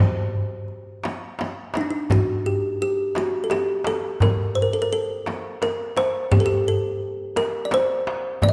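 This longing, melancholic Arabic maqam ensemble fragment in C maqam nikriz moves at 85 BPM in a straight 3/4, with an up-front, woody kalimba playing short, thumb-plucked melody lines between D4 and Eb5 from the start, joined at 0.7 seconds by a crisp, deep, metal-shell darbuka played with soft hands and at 1.1 seconds by a close, dry frame drum struck with hard hands, all set in a wet, spacious hall reverb.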